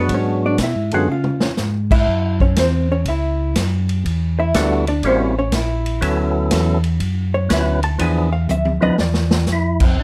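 A brief organ melody, a hollow-body jazz guitar and a mellow organ bass line open this bluesy, soulful soul jazz organ trio excerpt together, with a vintage drum kit joining a moment later in a swung 4/4 feel. The lead organ is fat and percussive, lightly overdriven through a slow rotary speaker with third-harmonic percussion and vibrato, and it drops out at 1.1 seconds before returning at 4.5 seconds to carry the melody to the end. The dark, clean, compressed hollow-body guitar is featured as a soloist, playing until 9.5 seconds. Beneath it, the organ bass is round and dark with audible key click and its own slow rotary swirl. The acoustic kit sounds natural and up front, with dark cymbals, a medium-tuned snare, a punchy kick and a rolled-off top, adding drum fills at 1.1 and 8.5 seconds. Light reverb surrounds the trio as the harmony moves from G#m7b5 through Em11 and A7b9 to Dmaj13 and E7b9.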